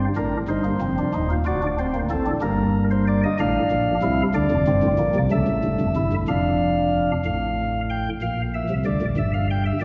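Moving in a steady, straight 6/8 at 62 beats per minute counted in dotted quarters, this short passage cut from a longer baroque-style fugue in three parts carries a driving yet solemn character. A single chamber organ plays solo throughout its 9.8 seconds, using soft flute stops with an intimate chamber voicing and a chiff at the start of notes. The instrument sits up front in the sound, spanning a deep D1 up to G5, while a generous church reverb with a 2.7-second decay lends the hall's resonance to the performance. The harmony travels from Gm through rich chords such as Ebmaj13 and Bbmaj13/F, with dominant sevenths on D7 and A7 pulling the music forward. Around 7.2 seconds a new section begins, passing through F/A and Bb before settling on Em/G, and the organ is tuned slightly bright at A4 = 441 Hz.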